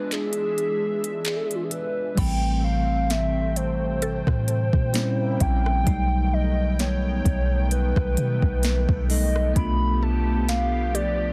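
A slow 65 BPM groove in 4/4 with a light swing on the sixteenths sets this moody, late-night contemporary R&B fragment in A minor, taken from a longer piece. The smooth R&B drum kit sits up front from 0.1 seconds, its electronic sound pairing a soft kick with a sharp snare, crisp hats, rim clicks, handclaps and crash, all given an overdriven edge. Over it a hollow, woody clarinet-like synth lead carries the melody with vibrato, chorus and digital delay, while a bell-like tine electric piano adds clean, bright accompaniment and a lush, airy unison pad holds thick sustained chords treated with chorus and phaser. The opening break gives way at 2.2 seconds, when a deep, round 808-style bass enters up front and a percussive FM mallet pluck joins quietly in the background with its own chorus and delay. The harmony moves from E7b9 to Am9, then through A#dim7 and B7b13 before settling on G9/B, all within a digital ambience and a dense, heavily limited modern master.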